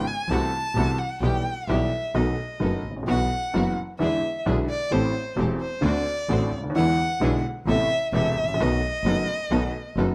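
Nostalgic and elegant, this short cut from a longer tango in E minor moves at 130 BPM with a rubato feel, as a warm, expressive bowed violin with portamento sings up front above a woody, slightly detuned upright piano, a clear double bass with a smooth top, and a rich string section placing stabs in the background, all captured in a dry, close 1970s-style studio sound over chords that pass through B7, E7, Am7 and D7.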